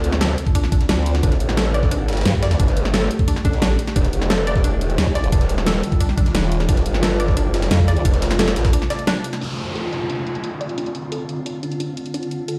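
Dark technical drum and bass with a futuristic, mechanical mood, this short cut drives in a straight 4/4 over a moody progression that starts on Dm7 and returns there at 9.4 seconds. A swarming, detuned drone of sustained chords hums underneath with built-in reverb and sidechain pumping, while a round analog pluck spins arpeggios through chorus and dub echo. Two up-front wobble basses carry the low end, an aggressive growl bass with overdrive and a formant-sweep wobble bass with tube saturation, both thickened with chorus. The drums stack a knocking electronic kick, a dubstep kit with a huge snare and low-passed bright hats, and a very quiet, gritty breakbeat sampler-style kit. After a brief break at 8.7 seconds, the second section brings a filter sweep on the arpeggio sound and an electronic downlifter, all set in a large studio reverb that suggests a big sound system in a bare room.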